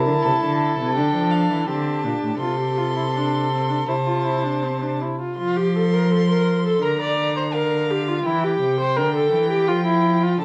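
A straight 4/4 pulse at 83 BPM carries this solemn, contemplative baroque-style fugue for string quartet in F major, tuned to A4 = 443 Hz. A clear, focused first violin sings the high melody from a distance, while a second violin adds an expressive vibrato line with portamento until it drops out at 5.0 s; an up-front, rich and smooth viola fills the middle, and a close, intimate cello plays the bass sul tasto with an airy bow. The short excerpt sits in a large studio's moderate reverb and carries the worn warble and pitch drift of old cassette tape.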